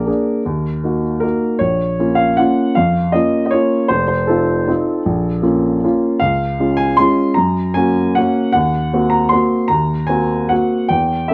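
The rhythm moves in 3/4 at 155 BPM, with uneven beats and a free rubato that lets the waltz pulse stretch and yield. This is a classical piano waltz with a wistful, nostalgic mood, played by a solo baby grand piano from the first moment to the end at 11.3 seconds, as a short cut from a longer piece. The piano sounds clear and open, with long sustain, and sits up front, spanning a range from F1 to C6. The harmony drifts through Ebm, Bbm, F7, back to Bbm, then Db and Gb before settling on Cm7b5/Eb, all in a tuning of A4 = 436 Hz. Light reverb and a dark production give the instrument a gentle, intimate glow.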